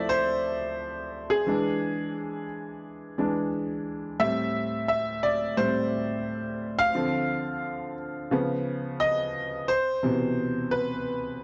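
Soul piano excerpt at 88 BPM with a light sixteenth-note swing, where a clear, worn grand piano plays alone and up front for 11.4 seconds, moving through lush, smooth chords from Fmaj7 through E7, Am7, Dm7 and Db9 to Cmaj7 in a dry, close 1970s-style studio sound with small-room ambience.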